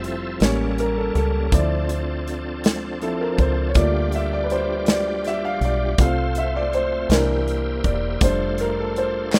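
A clear, boxy grand piano takes the lead from the start of this uplifting, hopeful slow gospel excerpt in 6/8 at 54 BPM in F major, backed by a bright tonewheel organ holding shouting sustained chords through a slow rotary speaker and chorus vibrato, a deep, round dub fingered electric bass, and an up-front acoustic drum kit with a tight kick and medium-tuned snare, moving from A7b9 through Dm7 and C7 to an F6, with a crisp, band-limited group handclap arriving in the background at 9.3 seconds in a rough home demo mix with light small-room reverb.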